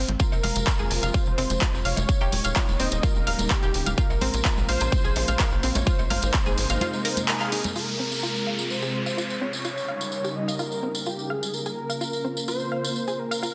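A straight 4/4 pulse drives this bittersweet progressive house excerpt, where a punchy electronic kick, an overdriven house kit of handclaps and hi-hat, ringing congas, cowbell and woodblock in the background and a jingly tambourine support a tight, wave-folded sequencer bass, round analog pluck arpeggios with tape echo, a thick unison lead melody and a lush, sidechain-pumped supersaw pad, until the kick, bass and kit drop out before 7.8 seconds, when the pad's filter begins to sweep and an electronic downlifter enters.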